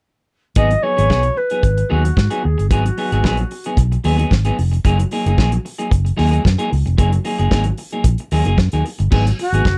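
Disco at 112 BPM in a straight 4/4, joyful and glamorous, cut from a longer piece and recorded dry and close in a 1970s-style studio. An alto flute with a pure, straight tone and crisp attack carries the melody from 0.6 to 3.7 seconds and returns briefly at 9.4, over a clean, picked semi-hollow electric guitar, while a round, punchy fingered electric bass sits up front. A soul drum kit with a fat snare, tight kick and dark cymbals drives the groove as the harmony moves from G#m7 to F#69 and back.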